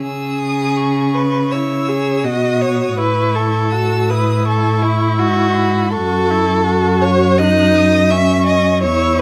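A slow, tender romantic movement for string quartet in C# minor opens with a single violin carrying a high, clear melody from a distance, while a second violin plays a rich line up front and a focused cello anchors the bass, all three bowed with vibrato. At 1.5 seconds a distant viola joins with expressive accompaniment and portamento, as the harmony moves from C# minor to A major and F# minor at 82 BPM in a flexible rubato 4/4. Close, detailed microphones and light reverb capture this passage from a longer piece, tuned to A4 = 439 Hz.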